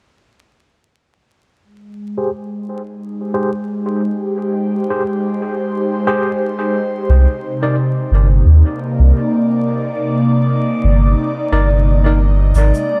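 A swung 88 BPM 4/4 groove in C minor carries this meditative, spacious ambient dub excerpt, where an airy, breathy pad with chorus and phaser holds sustained chords from 1.9 seconds, an overdriven, barky tine electric piano with fast tremolo and dub echo drops gritty stabs, both under a filter sweep as the harmony moves from Abmaj7 to Cm9, a round, deep sub bass with tube saturation arrives up front at 7.1 seconds, and a tape-toned cabasa with dub echo enters at 12.6 seconds, followed at 12.7 seconds by a glassy harmonics texture with drifting overtones, all over vinyl crackle and light digital ambience.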